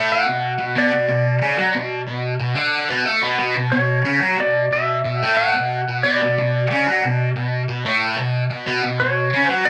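In a straight 4/4 at 91 BPM, this trippy, mysterious rock excerpt in B minor rests on a Bm chord, with a thick, double-tracked fuzz guitar riff up front through distortion and phaser, while a twangy, clean lap steel guitar carries the slide melody with slapback echo and volume swells across the full 9.7 seconds, all set in light digital reverb.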